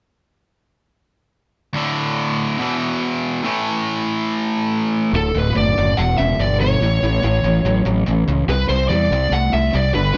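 Confident and sunny, this rock excerpt drives along at 143 BPM in a straight 4/4, set in D major. A bright, double-tracked overdriven electric guitar opens the riff at 1.7 seconds, moving through D5, E5 and A5 power chords in the low register. At 5.1 seconds a fuzz-laden fingered electric bass joins, round and punchy, anchoring the low end as the harmony shifts through D, Em, A and C. Moments later a lead guitar through a small cranked amp adds a warm, overdriven melody up between A4 and F#5. All three parts sit up front, wrapped in light reverb with a slightly rolled-off top end.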